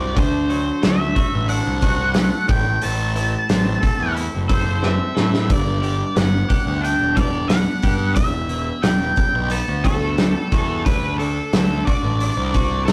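A rough rehearsal-room recording with tube saturation and a small room's moderate ambience frames this cathartic, restless quiet-loud alternative rock excerpt in G major at 90 BPM, where a dark octave-fuzz lead guitar carries the melody over twangy, clean twelve-string electric arpeggios and a round, overdriven picked fuzz bass sitting up front, while a loose indie drum kit with a fat snare, punchy kick and pumping room sound enters at 0.2 seconds and drops a fill at 4.8 seconds as the chords move from D through Am, G and Emadd9 back to D.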